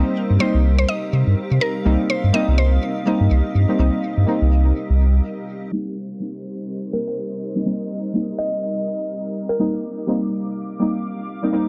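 Deep house with a warm, hypnotic mood, cut from a longer piece, built on a smooth, detuned analog pad, a dark, warbling chord stab up front, and a blurred, evolving granular cloud pad that carry through the whole recording. A woody FM mallet-like synth pluck carries the melody over a round sine sub bass until a brief break at 5.2 seconds; then a filter sweep moves through the chord stab and a plucked kalimba takes the melody from 6.9 to 10.2 seconds. Chorus colours the pluck, the analog pad and the stab, delay trails the pluck, stab and kalimba, the cloud pad carries its own built-in reverb, and tube saturation thickens the sub bass, all set under light reverb and a low-pass filter.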